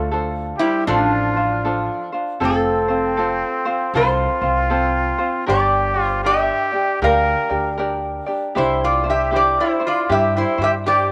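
Swung eighths at 63% give this Hawaiian piece an easy lilt at 78 BPM in 4/4, in F major, and the mood is relaxed and languid across this short excerpt cut from a longer piece. A metal-body resonator slide guitar carries the melody up front, its fingerpicked tone bright, metallic and nasal as the slide glides between F3 and F5. Beneath it, a trumpet with a straight mute plays a second line in a close-miked, jazz-style manner, breathy and whispered with soft attacks and vibrato. A fingerpicked ukulele adds light, mellow accompaniment near the front, while a pizzicato upright bass with steel strings supplies a woody, dark low end. All four parts play throughout, moving from Dm7 to F at 2.4 seconds, then Gm and finally Cadd9 at 8.6 seconds, with a moderate plate reverb lending a long, soft tail to the sound.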